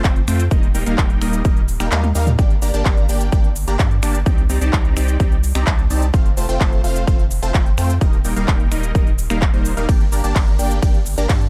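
A punchy, overdriven kick drum, a deep, saturated sub bass and a detuned supersaw stab riff carrying phaser, tape echo and sidechain pumping all open together this emotional, euphoric slice of festival progressive house, over chords moving from F and Eb through G minor and C minor add9. The kick sits up front as the loudest element, while a layered big-room drum kit of crisp hats, finger snaps, handclaps, ride, shaker and toms adds grit through its own overdrive. At 1.9 seconds the kick drops out for a drum fill before returning at 2.4 seconds, all within a dark, dry production cut from a longer piece.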